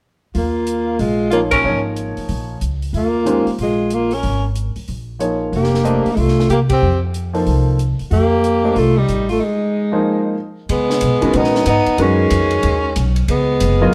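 Modal jazz with a spiritual, open mood, swinging in four as a breathy, subtone tenor saxophone carries the melody up front while a raspy, growling alto saxophone plays a second line alongside it. Underneath, a woody, thumpy upright bass on gut strings and a dry cocktail drum kit with dark cymbals and a punchy kick drive the groove, joined at 1.3 seconds by an intimate grand piano whose action noise is audible. The band hits accents together, drops into a break at 9.4 seconds and moves to a new section at 10.7 seconds, all set in a moderate stone room as though playing live together, in a passage cut from a longer piece.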